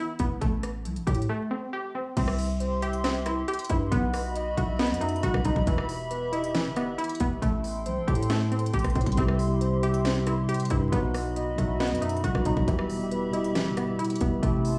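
A light reverb and a bed of vinyl crackle frame this eerie, dark trap cut, a half-time hip hop groove at 137 BPM in E harmonic minor, lifted from a longer piece. A glassy, crystalline wavetable pluck opens alone with chorus and tape echo on its arpeggios, joined at 0.2 seconds by a growling, buzzy 808-style bass and an up-front trap kit whose hard-clipped kick, sharp snare, crisp hats, rim clicks and crash carry a vintage 12-bit sampler grit. After a brief break, the second section begins at 2.2 seconds, bringing in a full, round octave-layered synth lead with vibrato and a hollow, flute-like pad holding airy sustained chords. The harmony cycles through Am7, C, B and Em. At 9.1 seconds a mellow tine electric piano enters with clean accompaniment, heard as if through built-in speakers, deepening the eerie, dark atmosphere.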